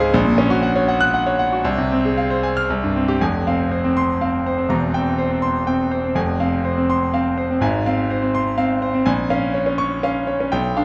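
A brilliant, up-front concert grand piano with a deep bass plays solo from the first moment in this stormy, agitated excerpt of a virtuoso classical piano study in F minor, moving at 122 BPM in a rubato 3/4 across a range from E1 to Gb6, with a new passage arriving on F minor at 3.2 seconds, the whole performance set in a wet recital hall reverb within a dark production.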